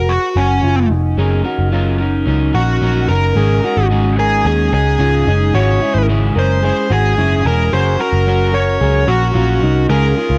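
A bluesy, overdriven lead guitar carries the melody from the first moment, its distorted, picked tone sitting up front and ranging from Db4 to Db5 over a breezy, bright indie pop groove at 110 BPM in a straight 4/4. Beneath it, a mellow, clean electric guitar plays fingered arpeggios, its dark voice softened by lush chorus and tape echo. A vintage muted bass, picked and foam-muted with a round, amped sound, anchors the low end prominently, reaching down to Fb1. At 1.2 seconds an electric guitar at the edge of break-up joins with picked accompaniment, slightly gritty and given its own tape echo. The harmony moves from Gb through Dbm at 5.5 seconds and back to Gb at 7.7 seconds, all within an echo-heavy mix touched with light reverb, in this brief passage cut from a longer piece.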